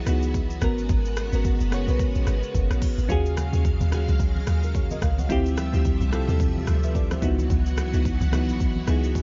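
The deep log drum bass sits up front, round and percussive, with a fast attack that decays into a dark low end. This hypnotic amapiano excerpt runs at 109 BPM in 4/4 with a 58% swing on the sixteenths. It moves through minor eleventh chords, starting on Dbm11 and passing through Abm11, Ebm11 and Dm11 before returning to Dbm11 at 7.2 seconds. A bell-like FM electric piano adds sparkling, mellow accompaniment with chorus, while a shimmering vintage string machine holds sustained violin chords through an ensemble chorus. A deep house drum kit enters at 0.1 seconds with a deep kick, metallic hats, rim click and shaker, all overdriven. Very quiet, close and dry congas with soft hands and a thin skin join at 3.1 seconds, all set in a dark production with light reverb.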